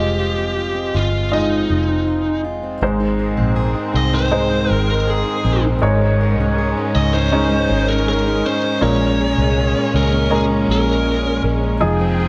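A slow, straight 4/4 pulse at 80 BPM carries this heartfelt, emotional pop ballad in Ab major, cut from a longer piece and moving from Fm7 through Ab, Dbsus2/Ab and Bbm7. A dark, round, foam-muted electric bass sits up front in the low register, alongside an intimate concert grand piano whose deep bass and audible action noise give the accompaniment a natural presence. Further back, a full-bodied jumbo steel-string acoustic guitar plays fingerpicked arpeggios. Over them, a biting, overdriven lead guitar carries the picked melody between Eb4 and Eb5, stopping at 11.4 seconds. At 2.8 seconds a lush studio string section enters with bowed, sustained chords, its vibrato, portamento and smooth top adding expressive sweep, all set in light reverb and small room ambience.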